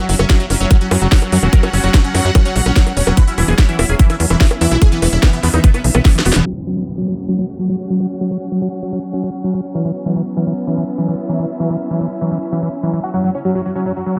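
A tight, up-front electronic kick, a cracking snare, crisp hats and bongos drive this 146 BPM psychedelic trance excerpt in straight 4/4, with a punchy sawtooth sequencer bass underneath and a squelchy, gritty acid bass riff with digital delay pumping against the kick. Above them, a huge, detuned supersaw lead with phaser and delay carries the melody over a pulsing gated chord texture and a lush bowed string section in the background, all moving between F#5 and E5. After a drum fill and band accent, the kick falls away at 6.1 seconds and the kit and sequencer bass drop out at 6.4, a downlifter enters at 6.5 as filter sweeps move across the acid bass, and the supersaw returns at 13.0.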